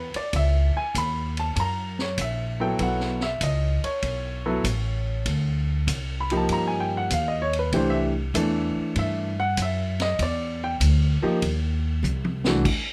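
A clear, smooth concert grand piano and a woody pizzicato upright bass open this playful, relaxed jazz trio excerpt at a swinging 97 BPM in 4/4, with the piano taking a solo from the start over shifting harmonies such as C#sus2, F#7 and Ebadd9. A vintage drum kit joins at 0.1 seconds with dark cymbals, a high-tuned snare, a punchy kick and a rolled-off top, then plays a fill from 12.0 seconds. The piano and bass sit up front, captured with close, detailed microphones and light reverb.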